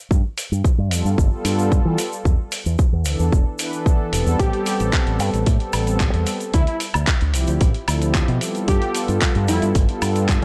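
A punchy, tape-warm electronic kick sits up front with a bright, envelope-filtered fingered bass and a close, dry tube shaker in this sleek, cosmic nu-disco clip at 112 BPM, soon joined by a gritty sampler-style kit of handclaps, hi-hat and woodblock. A smooth, detuned sawtooth pad with chorus, sidechain pumping and digital delay glides through G9, E7sus4, Am9 and Dm11 from 0.9 seconds. At 4.4 seconds a thick, wave-folded unison lead with vibrato, subtle chorus and delay takes the melody, all set in digital ambience.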